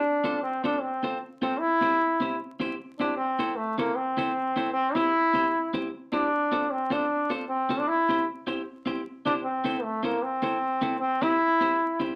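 Joyful and cheerful, this ska excerpt in C major moves at 153 BPM with a light swing, as a bright solo trombone with vibrato carries the melody over a clean, twangy, compressed electric guitar whose picked accompaniment follows a cycling F, C and A minor progression, the pair set in a moderate club reverb under a layer of vinyl crackle.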